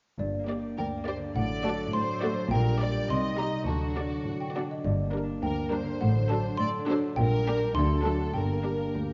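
A woody, dry xylophone played with soft rubber mallets carries the melody of this mischievous, magical film cue in G minor at 103 BPM, while a violin section adds a quiet melodic line and a second violin section plays a supporting line, a lush viola section fills in the accompaniment, a background French horn section holds mellow chords, a concert harp rings out fingerpicked arpeggios, and rich bowed cello and double bass sections anchor the bass, all set in a moderate scoring-stage reverb with a dark, warm production.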